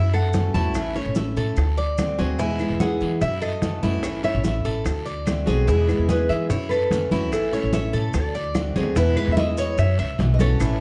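Latin Cuban son in a guajira vein, sunny and relaxed at 146 BPM, this excerpt from a longer piece has a classical, fingerpicked nylon-string guitar carrying the melody over bright, metallic double-string arpeggios from the Cuban tres, with a pizzicato upright bass up front and woody in tone. A picked steel-string acoustic guitar with fresh strings adds accompaniment from 0.3 s. Soft-handed congas, round, low-tuned bongos, raspy guiro and grainy maracas stay in the background, very quiet, dry claves tick along close by, and a drum fill at 8.6 s leads into a new section at 9.0 s. The chords cycle through F#m7, A, D7 and E, and the dark, warm production sits in a moderate large-studio reverb.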